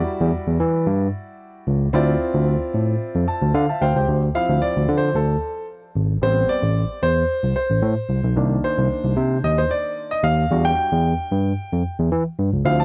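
A barky tine electric piano carries the bass line from 0.2 seconds, its bright, lightly overdriven tone pushed through a combo amp and sitting up front in this early-eighties boogie funk excerpt. A warm concert grand piano plays accompaniment from the start, up front with a natural sound and deep low end that round out the harmony above the bass. The grand piano plays a fill at 3.0 seconds, then takes a solo from 4.1 seconds to the close at 12.8 seconds. The tempo is a straight 112 BPM in 4/4, moving through minor ninth chords from Em9 to Dm9, Am9, Cm9 and back to Em9. Light reverb and a small room ambience give the dark, warm production a late-night, slick mood.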